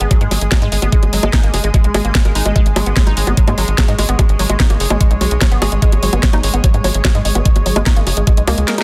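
Psychedelic and driving, this short psychedelic trance excerpt runs at 147 BPM in 4/4 over a G#5 chord, with a knocking, tape-warm electronic kick up front and an overdriven drum kit of cracking snare, bright hats and bongos. A tight, nasal sequencer bass pushes underneath while a woody, wave-folded pluck plays a riff through chorus, dub echo and sidechain pumping, framed by a bright, pulsing gated texture of sustained chords and a blurred granular cloud pad in the background. The dense, heavily limited mix stays fairly dry, and a very quiet swell enters at 8.4 seconds just before a drum fill at 8.7 seconds.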